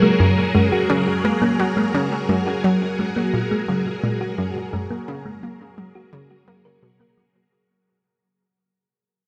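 Ambient, sequencer-driven space music in F# major at 86 BPM, this brief expansive and luminous passage is cut from a longer piece and rests on a single F#add9 chord. Up front, a phased string machine holds sustained chords with a swirling, vintage sawtooth tone, its slow attack shaped by ensemble chorus and phaser. Alongside it, a thumb-piano-like synth pluck traces arpeggios with a tine-like, mellow FM sound and a sub octave, treated with chorus and delay while a filter sweep moves across it. An analog pluck plays a riff in the lower register, its detuned sawtooth and square waves giving a round, bright edge with a fast attack and short decay, also carrying chorus and delay. The whole sits in a vast, echoing cathedral reverb with a 5.4 s tail, and a fade-out runs from 0.1 to 7.5 seconds.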